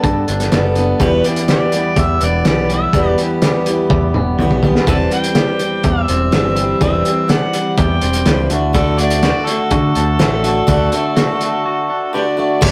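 A straight 4/4 pulse at 124 BPM drives this hopeful, open-road slice of folk and heartland rock, with a cloth-damped, thuddy drum kit up front, its fat snare, tight kick and dark, muffled cymbals sounding gritty and lo-fi, and a drum fill at 3.9 seconds. A bright, boxy picked steel-string acoustic guitar plays the accompaniment over a punchy picked electric bass, while a compressed electric guitar at the edge of break-up plays a riff through a progression moving from Gadd9 to Em, C/E and D. From 1.0 seconds an overdriven, amplified harmonica takes the solo melody with light vibrato and tongue slaps, all within a moderate stone-room reverb on this rough rehearsal-room recording.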